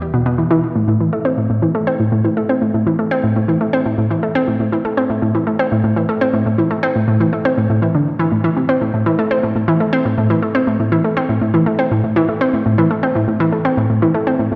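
Ambient and hypnotic with a cosmic pull, this short cut from a longer piece sets a lone analog pluck up front, its round, nasal, wave-folded tone snapping in with a fast attack and decaying through chorus and delay, all bathed in the long wash of a dark concert hall.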